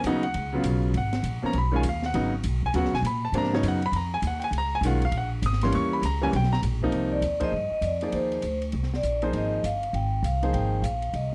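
Modal jazz at a brisk 200 BPM swing with an open, searching mood, where a clear, up-front concert grand piano comps over a woody, thumpy upright bass and a drum kit with dark cymbals and a boomy kick in a dry, close 1970s-style studio sound, the harmony moving from Db mixolydian to Ab lydian at 6.9 s, just before a ringing vibraphone with slapback echo enters with the melody at 7.1 s and the band hits an accent at 7.4 s in this fragment of a longer piece.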